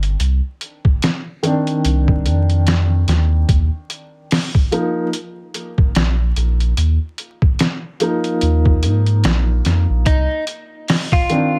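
A slow 73 BPM trip hop groove with a swung 16th-note feel opens this brooding, cinematic fragment. A gritty, pitched-down sampler drum kit with a thumpy kick, hi-hat and snare sits beside a deep, round sine sub bass thickened by tube saturation, over vinyl crackle and a dry, close sound. At 1.4 seconds a soft, thick-felt upright piano enters across Cmadd9 and Ebsus2 chords, its mellow tone roughened by 12-bit sampler grit, tremolo and tape echo, and at 10.1 seconds a clean, scooped electric guitar adds a brief picked melody with tape echo as the harmony returns to Cmadd9.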